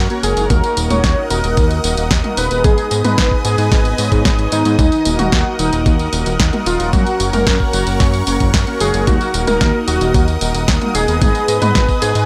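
A dry, close-sounding production with little reverb carries this danceable, melodramatic slice of italo disco, cut from a longer piece and built on a minor-key chord cycle. A fat, detuned sawtooth bass with tube saturation sits up front under a lush, chorused and phased unison pad and dark, brassy synth stabs set in the background with a cassette-tape tint, while a thick, bold unison lead with vibrato and delay carries the melody from 0.2 seconds. Driving it all is a gritty, thumpy electronic kick alongside a house kit with a punchy snare, bright hi-hats, tambourine and toms in a small room ambience.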